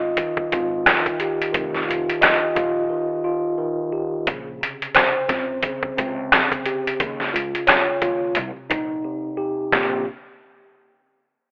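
A mellow, clean tine electric piano, high- and low-pass filtered and heard through built-in speakers, opens this dark, gritty boom-bap hip-hop fragment with a woody, gut-strung pizzicato upright bass beneath it, before an up-front, compressed, pitched-down sampler-style kit with a thumpy kick and medium-tuned snare, re-recorded in a small room, enters at 0.2 seconds, swings into a break at 2.9 seconds and drops out at 9.0 seconds, the recording wrapped in light reverb and a telephone-like sound.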